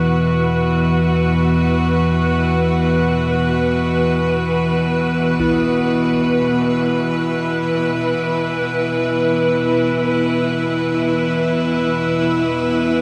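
Up front, a bright chamber cello section holds sustained, earthy chords with light vibrato and a shimmer reverb over a deep, warbling, rumbling drone, while a pure quartz singing bowl rings with slow beating in the background and a very quiet taiko ensemble sounds briefly at 5.4 seconds, all set in a wet cathedral reverb in this ominous, desolate dark ambient excerpt in free time.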